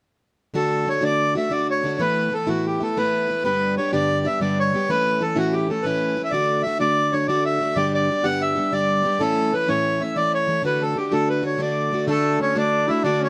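The reedy, smooth accordion carries the melody up front, its dark tone giving a rollicking, bright Celtic slip jig in D major a rich centre. It moves at 125 beats per minute in 9/8 with a straight feel, in a short section cut from a longer piece. A picked, plugged-in steel-string acoustic guitar accompanies alongside, warm and up front, with audible finger squeaks and a concert polish as it moves through D, Asus2, G and A. At 12.1 seconds, as the opening section repeats, a clear trumpet enters with a soft attack and a classical-style second line, playing low and quietly beneath the accordion. Light reverb and close, detailed microphones keep the sound intimate and crisp.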